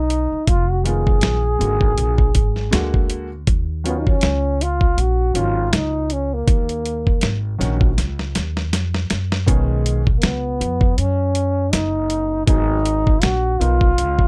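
A breathy, whispered trombone carries the melody in this cool, mellow jazz-hop excerpt, its dark tone touched by light vibrato and soft attacks, sitting up front yet sounding distant and roomy. Beneath it, a woody upright bass with gut strings plays pizzicato, thumpy and close, while a gritty, compressed sampler-style drum kit brings a thumpy kick, a medium-tuned snare and hi-hat with a gentle swing. A slightly detuned upright piano adds intimate accompaniment from 0.8 seconds, its action noise audible beneath the other parts. A drum fill at 8.0 seconds leads into a new section at 9.5 seconds, where the harmony shifts. The production is dark and dry, with little reverb, giving the piece a close, mellow feel.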